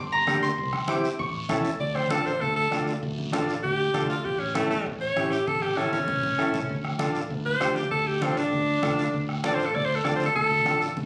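This driving, passionate cumbia excerpt moves at a brisk 196 BPM in D harmonic minor. A ringing, fingerpicked concert harp leads the opening high up front over Gm, C and A. An edgy, forceful alto saxophone takes over the melody at 1.8 seconds, playing with punchy vibrato over Dm, A7 and back to Dm. Underneath, a warm, direct fingered electric bass and a reedy, clean combo organ with light vibrato carry the harmony. A soft-beater bombo with a vintage, band-limited tone and thick-skinned, low-tuned congas sit in the background, joined by a raspy guiro, with a drum fill at 5.5 seconds. The whole band is heard as if from a phone in a club, with moderate reverb giving the sound a lively, roomy edge.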